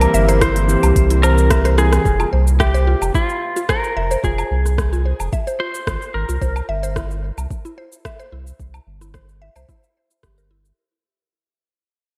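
A straight 4/4 groove at 110 BPM drives this organic downtempo excerpt in F harmonic minor, with a crisp, overdriven kit of cabasa, hi-hat, rim click and woodblock running throughout and a soft, overdriven electronic kick entering at 0.4 s, both under a round, up-front sine sub bass. The opening moves from C7 to Fm: a bell-like tine electric piano with sampler grit and sidechain pumping and a tense, nasal bowed-like drone both stop by 2.1 s, just after a drum fill, while a twangy slide lap steel carries the melody until 6.7 s and a woody, mellow mallet-like pluck arpeggiates through chorus, phaser and delay. From 2.1 s the music fades out, reaching C at 6.4 s, and a lush hall reverb soaks it in a dreamy, mystical haze.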